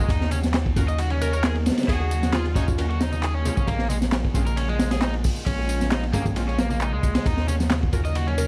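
A dry, crackling vinyl texture frames this funky, swaggering breakbeat section, cut from a longer piece and driven by a gritty breakbeat kit with a punchy kick, high-tuned snare and dark cymbals, a deep saturated sub bass up front, tape-warm electronic tambourine and handclaps, and very quiet bongos and congas. A bright overdriven guitar riff with tube saturation and dub echo carries the groove, while bold orchestra-hit-like synth stabs and a warbling, nostalgic tape-like pad with sidechain pumping sit in the background over Ebm7 and Bbm7 chords. A glassy wavetable pluck with a small-speaker, cassette tint adds a brief melody from 1.2 to 2.8 seconds and returns at 8.4 seconds.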